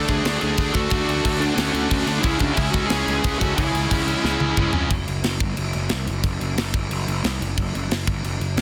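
Heavy metal excerpt with an epic, heavy mood, opening in half time as a dark, delayed lead guitar melody and a brighter background second lead ride over D and C#m beneath a riff from bright distorted and overdriven guitars and a very quiet double-tracked semi-hollow guitar, before a drum fill at 4.2 seconds leads at 4.9 seconds to a section where only the growly fuzz bass and the tight, airy drum kit with its bright cymbals continue, all in a dense, heavily limited modern master.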